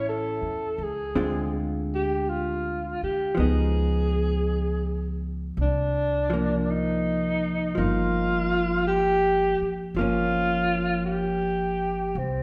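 Jazz ballad in C minor at a slow 54 BPM with a swing feel, smoky and intimate, drifting through chords such as Dm7b5, Db9 and Cm11 in this short passage cut from a longer piece. An up-front alto saxophone carries the melody with a warm subtone, soft attack and gentle vibrato, while a dark, clean, compressed hollow-body electric guitar plays picked accompaniment and a woody pizzicato upright bass holds the low end. The trio sits in a wet recital-hall reverb that gives the sound a spacious, church-like glow.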